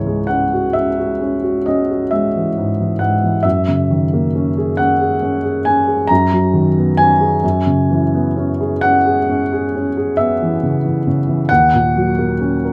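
A clear, intimate baby grand piano plays alone through this brief passage cut from a longer impressionist classical piece, its sound natural and up front, with audible action noise caught by close, detailed microphones and set in light reverb. The mood is mysterious and hazy, unfolding in C# dorian at a slow 45 BPM in 9/8 with a free, rubato feel, spanning C#2 to A#5. Lush extended harmonies drift from E69/C# through F#13 and B69/F# to C#m7/F#, settling on D#m7 at 11.5 seconds.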